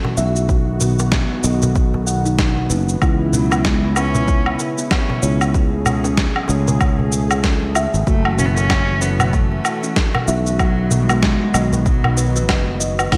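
A bright, 1980s-style digital production set in a lush hall opens this mystical, hypnotic organic downtempo excerpt at 95 BPM, where a warbling, detuned analog pad with chorus and sidechain pumping holds chords while a woody, ringing kalimba spins delayed arpeggios and a very quiet, close clay-shell darbuka ticks underneath. A growly, up-front fretless bass and an overdriven, deep electronic kick arrive almost at once, joined by a gritty, tape-warm sampler-style kit of hi-hat, shaker, fat snare and woodblock dressed in gated reverb, all riding a swung groove through B, C#m7, Amaj7/C# and F#m7. At 3.0 seconds a dark, intimate cello enters with a soft-attack, sul tasto vibrato melody, bathed in digital delay and shimmer reverb.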